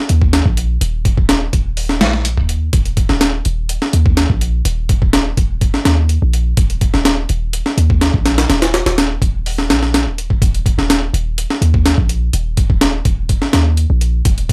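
Breakbeat at 125 BPM with a straight 4/4 feel, this funky, swaggering clip cut from a longer piece pairs a sampler-style drum kit of hi-hat, thumpy kick and high-tuned snare with an 808-style bass, both running from 0.1 to 14.5 seconds. The drums sit up front, compressed and gritty with a small room ambience, while the bass is deep and boomy, a mellow sine tone with a fast attack that decays between Eb1 and Eb2. The overall sound is dry, with little reverb.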